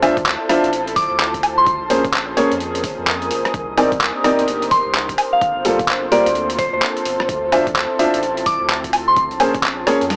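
Through a dry, gritty small-speaker sound with light reverb, this late-night, moody two-step UK garage fragment swings its 16ths at 128 BPM over minor ninth chords from Dm9 to Bbm9, Cm9 and Gm9, with up-front intimate grand piano stabs trailing tape echo, an overdriven, pitched-down sampler-style kit of handclaps, hi-hat, rim click, snare and woodblock, a thumpy overdriven kick from 0.2 s, a round triangle-and-square dub sub bass and a breathy, detuned background pad both pumping to the sidechain, a dark chorused ambient pad with a moving notch, and a pure, warbling FM bell melody that first appears at 1.0 s and returns from 4.7 s.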